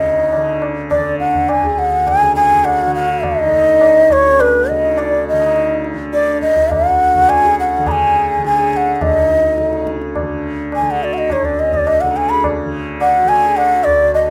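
A breathy bamboo bansuri sits up front, carrying the melody with vibrato and tongued notes whose unsteady delivery adds a human, searching quality to this meditative yet radiant piece of Hindustani classical music. Beneath it, a softly plucked tanpura holds a low, buzzing drone with a shimmering acoustic glow. A reedy pedal harmonium breathes a second line in the background, its tone warm. High-tuned tabla enters at 0.3 seconds, its short-ringing strokes kept in the background with a small-room character. The music gradually speeds up across the whole 14.3-second passage, which is cut from a longer performance. Moderate studio reverb surrounds the rough, homemade demo mix.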